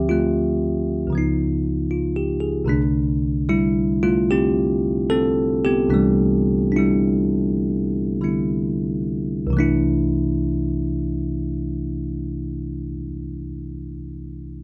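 A solo tine electric piano opens this romantic, tender jazz ballad fragment, its bell-like, clean tone sitting up front and spanning from deep bass notes to a bright upper register over a gentle swing. The harmony moves from Dm7 to Db9 before settling on C69, and the pace eases from 2.7 to 9.5 seconds, when a new passage begins. Close, detailed miking with little reverb keeps the sound direct and intimate through its close at 14.6 seconds.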